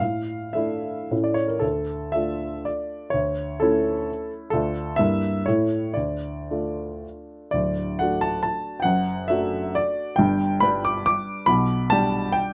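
Nostalgic and wistful, this short passage from a longer romantic classical piece is a triple-time dance with dotted rhythms and a supple rubato, played by a solo baby grand piano whose warm, present tone sits up front, captured by close, detailed microphones with light reverb, with a new section arriving at 7.5 seconds.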